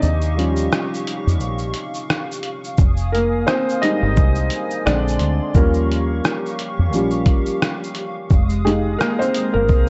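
The recording has the worn, warbling character of old cassette tape, with a drifting pitch, a dulled top end and a digital ambience around it. This hazy, melancholic lo-fi hip hop clip moves at 87 BPM in 4/4 with a lazy swing on the sixteenths, cut from a longer piece. A felt-muted upright piano sits up front, mellow and intimate, taking a solo across the whole clip while a break marks the opening 2.8 seconds. Beneath it, a deep dub fingered electric bass is dark, round and punchy, and a sampler-style drum kit adds gritty 12-bit character with a thumpy kick, hi-hat, rim click and shaker, compressed, pitched down and muffled as if re-recorded in a small room. A hollow, flute-like pad floats quietly behind, its sustained chords softened by ensemble chorus and long release. The harmony cycles through Eb9, Fm7 and Bb9 before returning to Eb9 and Fm7.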